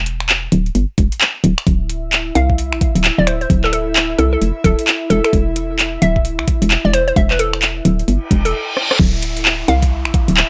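A dry, gritty recording with little reverb carries this moody, late-night two-step garage excerpt, its swung sixteenths giving the groove a shuffling feel. A knocking FM bass, bouncy and punchy, sits up front from the start alongside an overdriven garage kit of metallic hats, finger snaps, handclaps, rim clicks and crash cymbal, soon joined by a layered electronic kick with the same distorted bite. An airy, breathy pad enters at 1.7 seconds, soft and mellow under chorus, its sustained chords pumping against the sidechain as the harmony moves through suspended and rootless voicings. A hollow square-wave pluck carries the melody, detuned and ring-modulated with a filter sweep, chorus and analog delay. A reverse cymbal and downlifter enter at 8.3 seconds, a drum fill follows, and the track drops into a new section at 9.0 seconds.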